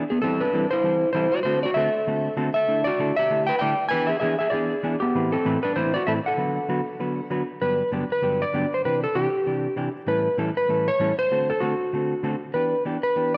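Country music with a down-home, swinging feel, this short cut from a longer piece pairs a clean, fingered hollow-body jazz guitar playing accompaniment with a dark, slide-played lap steel carrying the melody through tape echo, both sitting up front. The harmony moves from Am7/E through D7 and E7 in the opening section before shifting at 7.6 seconds to a second section built on Gmaj7, Cadd9, A7 and Em7. A wet echo chamber with a long tail surrounds the pair.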